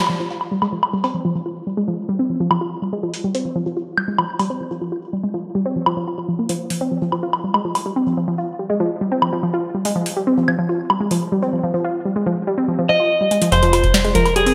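A warbly, dusty sawtooth pluck, coloured by chorus, cassette-tape wobble and delay, spins arpeggios under a filter sweep through this eerie, glitchy IDM excerpt in F minor at 143 BPM, beside a booming analog drum machine of crisp snare, metallic hats and woodblock; a slightly broken-up electric guitar melody arrives at 12.9 s, a drum fill lands at 13.3 s, a fast-attack, decaying FM bass on F joins at 13.5 s, and a deep background kick follows at 13.8 s, all set in a lush hall reverb with bright 1980s-style digital production.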